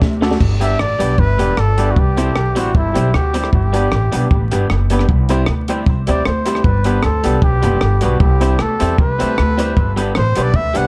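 Cheerful and joyful, this ska excerpt moves at 154 BPM in a straight 4/4 in G major, alternating between G and C chords throughout. A brief drum fill on the compact cocktail kit opens it, with a dark, smooth sound, a high-tuned snare, a punchy kick, rim clicks, hi-hat and crash cymbal sitting up front in a small room. Beside it, the plucked upright bass is woody and growly with steel-string bite, also close and prominent. Further back, an electric guitar through a small old amp adds twangy, slightly broken-up, lo-fi accompaniment, while a warm upright piano with short sustain supplies stabs touched by dub echo. From 0.6 seconds a breathy trumpet takes the solo, intimate and whispered with a soft attack, vibrato and its own dub echo, all set against a prominent bed of vinyl crackle.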